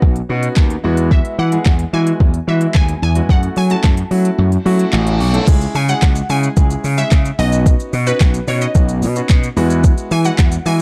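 A gritty, overdriven slap bass sits up front and drives this confident dance-pop passage at 110 BPM in C# minor, its punchy, bright tone pumping with the sidechain. The smooth R&B drum kit is the loudest part, an electronic, overdriven kit with a soft kick, sharp snare, crisp hi-hat, shaker, handclaps and crash cymbal. Beneath them, a clear grand piano with long sustain supplies chords through Badd9, Eadd9 and F#m7, and it pumps with the mix as well. From 1.1 s a glassy wavetable pluck carries the melody, crystalline and detuned, with a sub octave, filter sweep, fast attack, decaying tone and chorus. The kick drops out at 4.4 s while an electronic reverse cymbal rises into the second section at 5.5 s, where the harmony moves through C#m, Badd9 and Eadd9. The production is dark and dry, with little reverb, and this driving passage is cut from a longer piece.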